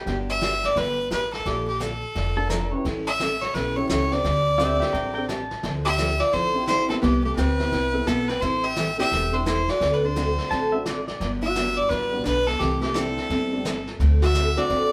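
A clear, nasal fiddle carries the melody up front in this down-home, swinging western swing excerpt at 172 BPM, over a thumpy gut-string upright bass, a mellow, dark upright piano, a bright dreadnought acoustic guitar with finger squeak and a distant, roomy brush kit, while a fingerpicked pedal steel slips in brief slide phrases with volume swells and a clean hollow-body archtop guitar adds a second line from 5.9 seconds, the band playing live in one room with moderate reverb.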